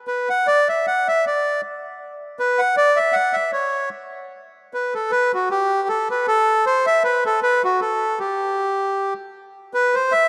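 A reedy, bright, close-miked bandoneon plays alone from 0.1 to 10.3 seconds in this whirling, bittersweet musette fragment cut from a longer piece, moving in a swung, rubato 3/4 at 155 BPM in E minor and set in a long plate reverb within a rough home-demo mix.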